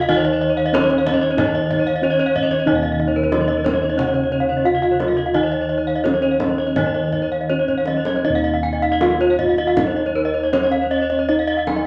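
Balinese gamelan with a ceremonial, brilliant mood, cut from a longer piece and moving in a straight 4/4 at 79-93 BPM: a mellow, airy metallophone carries the melody with padded disc mallets; a dark, smooth metallophone accompaniment sits low until 8.3 s; a bright, up-front metallophone and a boxy, warm one both play arpeggios with horn mallets; round bossed gongs hold the bass; and a deep, distant kendang played with soft hands adds percussion, with a drum fill at 7.7 s leading into a new section, all the metallophones shimmering from paired tuning inside wet studio reverb.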